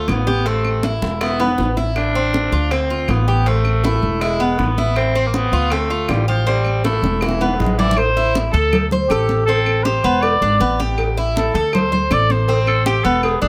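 A warm, vibrato-tinged trumpet takes the melody up front from 7.8 seconds, arriving over a sultry Cuban son and guajira groove in A minor at 160 BPM, where a bright, metallic tres picks double-strung arpeggios and a dark, thumpy pizzicato upright bass anchors the low end. A breathy, raspy tenor saxophone carries a gritty second line through the opening 8.0 seconds, while high-tuned bongos with cowbell, damped hard-hand congas and woody claves sit in the background, with a drum fill early on and another marking the turn into the trumpet's section. Light reverb surrounds this short excerpt from a longer piece.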